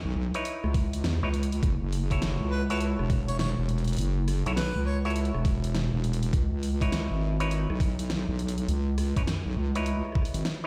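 Driven by a swung sixteenth-note groove at 102 BPM in 4/4, this funky, playful glitch hop excerpt sits in F# dorian, moving from C#m9 to F#m7 and back to C#m9 at 6.3 seconds. A layered dubstep kit with a huge snare, bright hi-hats and rim clicks is soon joined by an overdriven electronic kick drum knocking up front, both re-recorded in a small room. Underneath, a heavy wobble bass with a square and sine tone, fast attack and chorus holds the low end, saturated and compressed yet mellow. An auto-wah clav adds stringy, twangy stabs through a combo amp, pumping with sidechain and trailed by tape echo. From 2.5 to 5.1 seconds a harmonica plays a brief jazz-style solo with light vibrato, scooped notes and a smooth top, also touched by tape echo. The whole mix sounds as if played on a big sound system in a bare stone room, giving it a reverberant ambience.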